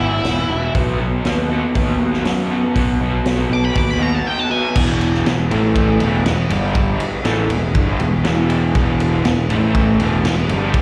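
Blues rock power trio meets southern rock in this raunchy, gritty excerpt, where a dark octave-fuzz lead guitar with wah and slapback echo carries the melody alongside a faint, nasal parked-wah second line until 4.8 seconds, over a raw, lo-fi, double-tracked garage guitar riff with harmonic tremolo, a bright, growly picked bass, a vintage kit with dark cymbals and a punchy kick entering at 0.2 seconds, and a very quiet, thick tonewheel organ holding sustained chords through a slow rotary speaker, all heard as a live gig through the venue's PA in a recital-hall reverb.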